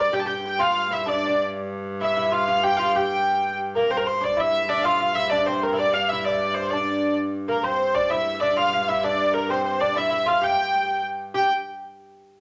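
A driving, ancient-sounding medieval dance in 6/8 and G dorian, cut from a longer piece, starts at 129 BPM and speeds up throughout as a nasal, boxy hurdy-gurdy carries the melody up front, a clear fiddle with light vibrato traces a second line in the background, a bright fingerpicked lute with double strings adds another second line, and a rich, distant viola da gamba rings out a floating drone on G2, all in a wet studio reverb, with a new section beginning at 3.9 seconds.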